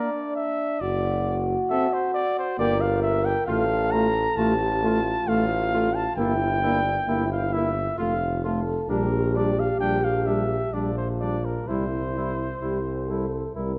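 A dusky, moderately reverberant scoring-stage sound frames this triumphant, noble brass quintet passage in F major, moving at a stately 66 BPM in 3/4 and cut from a longer piece. Up front, a dark trumpet with vibrato and a smooth top carries the melody, while a mellow second trumpet sits distant in the background, a warm, roomy French horn and a close-miked trombone fill the accompaniment, and a clear bass trombone enters at 0.8 s with the bass line. The harmony passes through Gm, F/A and Gm6 before settling on a C chord at 11.7 s.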